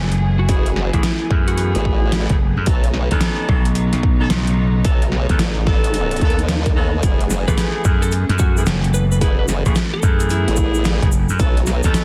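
This glitch hop excerpt opens on muted, veiled strings holding dark, distant chords in the background, pumping against the beat, alongside a gritty slap bass that is bright, overdriven and up front. Within the first second a punchy electronic kick, a dubstep kit with a deep snare and metallic hats, a tight pop-style horn section firing delayed stabs, and a saturated formant-sweep wobble bass with chorus all arrive, giving the groove a swaggering, playful strut over a swung feel. A slightly broken-up lead guitar with digital delay plays a short melodic phrase from 0.4 to 2.2 seconds, then returns at 7.5 seconds, staying in the background. At 7.0 seconds a grainy acoustic cabasa joins as the harmony cycles back between minor eleventh and ninth chords. The mix is dense and heavily limited, set in a digital ambience with a layer of vinyl crackle, and the overdriven drums carry a small-room grit.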